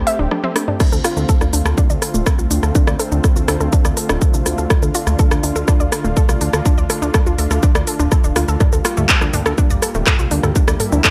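A straight 4/4 pulse at 123 BPM drives this hypnotic melodic techno excerpt in D minor, where a house drum kit of crisp hats, handclaps, rim clicks, shaker, toms and crash opens with a short fill before a punchy, up-front electronic kick lands at 0.8 seconds, anchoring a fat, saturated sawtooth analog bass, wave-folded detuned unison pluck arpeggios with delay, and a warbling, vintage chorused pad holding long chords from Am7/D through Dm7 to Gm7/D at 8.6 seconds, with sidechain pumping breathing through the pad, bass, pluck and kit inside a digital ambience.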